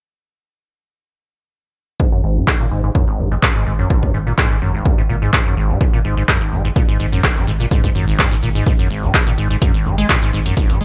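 A squelchy, resonant square-wave acid bass riff sits up front with lush chorus, digital delay and sidechain pumping, driving this hypnotic acid house excerpt as a punchy electronic kick enters at 2.0 seconds, joined by a deep, saturated sine sub bass on a sustained G#1 at 2.2 seconds and an analog drum machine's handclaps and hi-hat from 2.5 seconds, all under light reverb in a bright 1980s-style digital production.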